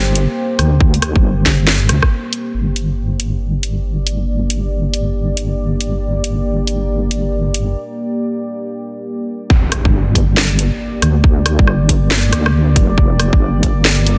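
Heavy and cavernous, this deep dubstep excerpt moves in a swung half-time feel, a dark, saturated wobble bass and a moody, slow-attack sawtooth pad sustaining a single minor chord from the start, with the pad carrying a chorus and its own reverb. A garage kit of hi-hat, rim click and cracking snare enters at 0.2 seconds, while a tight, tape-touched electronic kick sits up front briefly from 0.8 seconds before dropping out at the first break. At 9.5 seconds the drop arrives, the kick returns and an electronic impact hits, all within a dense, heavily limited modern master.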